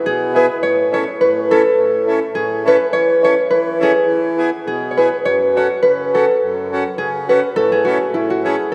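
Alpine folk in the manner of an alpine dance band, this short festive, jolly excerpt moves at 104 BPM in 2/4 with a light swing on the eighth notes, set in A major and tuned slightly high. A concert harp carries the melody from start to finish across its 8.7 seconds, its fingerpicked, ringing tone sitting up front in the mix. Underneath, an accordion supplies the accompaniment throughout, reedy and full with a dry tuning and an airy edge, also placed up front though a little lower in level than the harp. The harmony opens on E before settling on A at 0.6 seconds, then passes through A over E, E and F#m before returning to A at 7.5 seconds. Both instruments bloom inside a wet church reverb with a long tail, giving the performance the spacious sound of a church or concert hall, and the passage is a fragment cut from a longer piece.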